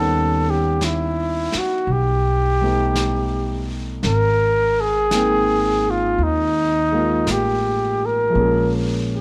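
Set in a large studio with a moderate reverb, this short slice of a longer jazz ballad has a romantic, intimate mood and an unhurried swing. A breathy, mellow trumpet carries the melody up front, its soft attack, light vibrato and scooped notes giving the solo a whispered quality. A concert grand piano accompanies with a natural, warm tone and deep bass, while a woody, growly upright bass is plucked up front. A vintage brush drum kit enters at 0.8 seconds, its brushed snare and hi-hat sounding mid-forward with a rolled-off top. The harmony moves from Eb7alt to Abmaj9 and arrives on Bbm7 at 8.3 seconds.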